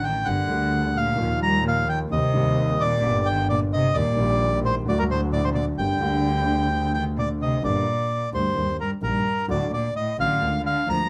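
A moderate club reverb surrounds this tense, melancholic tango fragment in rubato 4/4, where an up-front, reedy, dark bandoneon carries the melody over a nasal, boxy cello second line with portamento, a warm concert grand piano accompaniment with deep bass and long sustain, and a clear, focused double bass, both strings bowed with vibrato, all four sounding through the full 11.1 seconds as the harmony moves from Gm through Eb and D.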